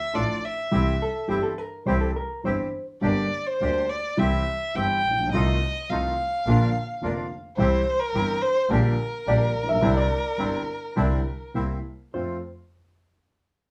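A rubato 4/4 tango at 105 BPM in F major, this tense, melancholic fragment of a longer piece centres on an up-front bowed violin solo, expressive and smooth on top with vibrato and portamento, running from the start to 12.1 seconds. Beneath it a dark, woody upright piano, slightly detuned, carries the accompaniment, a reedy bandoneon adds stabs, and an earthy bowed double bass with light vibrato sounds distant in the low register, while a clean, fingered hollow-body electric guitar adds a second line briefly near the opening and again from 9.3 seconds. The band plays live together in one room with a wet ambience, and the harmony moves from D minor through G minor and B-flat before arriving on F at the close.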